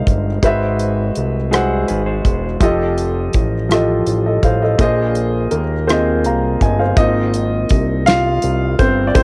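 Slow six-eight R&B at 55 BPM with an intimate, sensual mood, cut from a longer piece and captured as a home cassette recording with little reverb. A grand piano with audible action noise carries the chords up front over a fat, nasal analog bass and a damped 70s drum kit with tight kick, medium-tuned snare, rim click and hi-hat, while a dark, slightly broken-up electric guitar through a small old amp adds a brief, quiet second line with tape echo from 1.5 to 2.6 s. The harmony moves through Ab7alt, F7 and Bb9sus4 before the piano takes a solo at 7.0 s.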